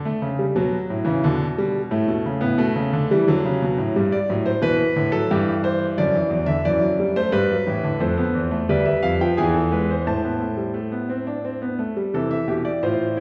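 A recital hall bloom of about 1.5 seconds surrounds this recording, placing the listener some distance back in the room. It is an elegant, stately fugue in the baroque manner, written in four parts for a solo concert grand piano and taken from a longer piece. The pulse moves at 88 BPM in a straight 3/4. The piano's tone is clear and smooth with a vintage character, and its deep bass reaches down to D2 while the upper lines climb as high as A5. The harmony settles in G major through progressions on D, G, A and C, then turns to A minor at 8.0 seconds, passing through F, a diminished chord and E before arriving on A minor. The fragment breaks off at 13.2 seconds.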